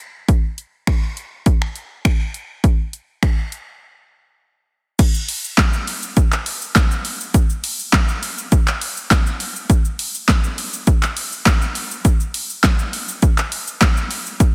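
An analog drum machine opens this upbeat, euphoric pop excerpt at 0.3 s, setting a straight 4/4 pulse at 102 BPM. The kit is dry and sits up front, built from a punchy kick and snare alongside hi-hat, shaker, finger snaps, handclaps and crash cymbal. Overdrive gives the whole machine a gritty edge, and soft clipping roughens the snare further. A break arrives at 3.8 s, and the drop lands at 5.0 s, carrying the groove through to the end of the cut. Light reverb surrounds the drums, and the dense, heavily limited modern master keeps the sound tight and forceful.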